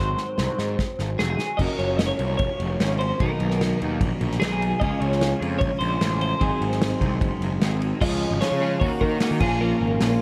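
An upbeat, carefree indie rock excerpt in straight 4/4, this short cut opens on a drum fill from an unplugged kit that sounds airy and polished in a small room, with bundle sticks, dark cymbals, a punchy kick and a medium-tuned snare sitting up front. From the start, a bright twelve-string electric guitar carries the melody with a clean, twangy chime, colored by tremolo and analog delay. Beneath it, a growly fuzz bass, overdriven and up front, anchors the low end while a clean, compressed twangy guitar plays a chorused riff in the background. At 1.6 seconds a warm overdriven guitar joins with its own riff through analog chorus, thickening the band as the chords move from Gbmaj7 through Cbmaj7 and Db6. Near the close, at 8.4 seconds, very quiet group handclaps with a hollow, live-room sound add a lift, all under light reverb and a layer of vinyl crackle.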